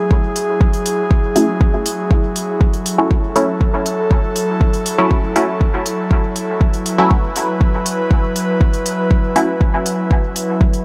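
Set in a lightly reverberant digital ambience, this meditative, deep dub techno excerpt moves at 120 BPM in F# minor, resting on a single F#m7 chord throughout. An airy, breathy pad sits up front with slow-attack sustained chords, chorus and sidechain pumping, while a deep electronic kick and smooth hi-hats drive the straight 4/4 groove. From 1.4 seconds a muted, detuned dub chord stab with a fast attack and short decay enters, colored by chorus, phaser, sidechain pumping and dub echo, and it stops at 9.5 seconds.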